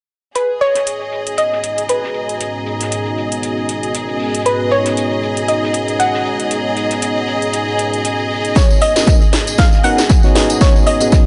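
Moody and smooth, this deep house passage, cut from a longer piece, moves with a lightly swung groove in G# minor territory built around a single G#m11 chord. A soft, round pluck carries the melody through analog chorus and tape echo, while a deep, dark ambient pad enters at 1.3 seconds with slow-attack sustained chords, its detuned unison voices and sub octave pumping against the beat. A close, lush studio string section adds bowed texture with vibrato, also pumping, and two drum kits share hi-hat and snare duties: a very quiet, damped 70s kit with a fat, dry snare, and an overdriven house kit with a cracking snare and metallic hats. At 8.6 seconds a build-up arrives with a drum fill, a punchy, overdriven electronic kick placed up front and a jingly, bright tambourine, and at 9.0 seconds a worn, slightly out-of-tune tine electric piano joins with stabs through a combo amp under a filter sweep. 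The whole recording has a dry, gritty hardware character with a dull top end.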